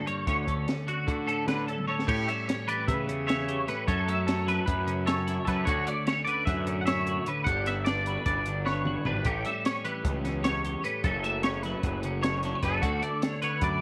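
A fuzz-drenched picked electric bass sits up front in this bright, intricate fragment of math rock and midwest emo, its overdriven tone pushing through a brisk 9/8 pulse at 301 BPM counted in eighths, in D major. Two clean, compressed twelve-string electric guitars ring from the opening: one carries the low-to-mid chordal accompaniment soaked in spring reverb, while the other spins higher arpeggios shimmering with ensemble chorus. A compact cocktail drum kit with a high-tuned snare, punchy kick and a dark, rolled-off top moves through hi-hat, crash and toms, with short fills leading into the main section at 2.1 seconds and again near 9 seconds. A scooped, twangy electric guitar carries the melody under a lush chorus from 1.9 seconds, drops out around 9.1 seconds, and returns just before the cut. The chords cycle through Dmaj7, A7, F#m7 and Gmaj7, and a small room ambience gives the whole blend a close feel.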